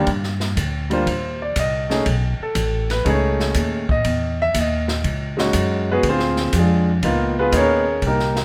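Swinging in 4/4 at 121 BPM, this sophisticated jazz piano trio excerpt features an up-front, natural-sounding concert grand piano with deep bass soloing from 0.1 s over chords moving from Ebmaj7 through B13, Emaj13 and Dm7b5 to Db13, supported by a woody, thumpy pizzicato upright bass and an open acoustic drum kit with dark cymbals, a medium-tuned snare and a boomy kick, set within a moderate large-studio reverb.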